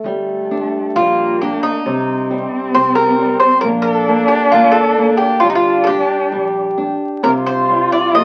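Heard through the crackle of a very old 78 rpm record in a wet club reverb, this passionate, longing fado-style ballad in G minor drifts in rubato at 66 BPM, as a picked, metallic Irish bouzouki carries the melody up front from 1.0 seconds over fingerpicked flamenco guitar with fresh-string squeak, a dark, nasal bowed cello singing a second line with vibrato and portamento, and a woody pizzicato upright bass, moving through Gmadd9, C5, Bb and Gm.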